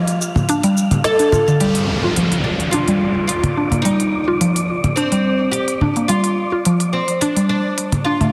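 This excerpt of organic downtempo opens with a bright, fretless oud carrying the melody over round, mellow arpeggios from a mallet-like synth pluck, while a dark, breathy wind-like texture hovers high above, all moving at 107 BPM in a straight 4/4. The oud's plectrum-plucked double strings ring with a touch of digital delay, and the woody, fast-attack, decaying synth pluck is thickened by chorus and its own echoes, both sitting up front. An organic electronic kit of congas, shaker, crisp hats and a woody snare comes in almost at once, its tape-tinged sound captured in a large room. At 1.6 seconds a downlifter sweeps through until 6.1 seconds as the harmony moves from F6 to G7 with the third omitted, settling on Fsus2. The mood is mystical, wrapped in a lush hall reverb and finished with a dense, heavily limited modern master.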